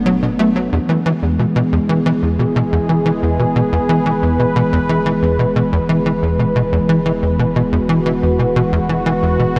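Ambient, sequencer-driven space music at 90 BPM in 4/4, hypnotic and mysterious, cut from a longer piece and bathed in a lush hall reverb. A punchy sawtooth sequencer bass riff with chorus and delay drives up front beside an evolving, detuned pad of sustained chords with a slow filter swell, while a soft, round plucked arpeggio sounds very quietly only until 0.7 seconds. Beneath them a deep sine sub bass fades in from 0.7 seconds as the harmony moves from Bm7/F# to E.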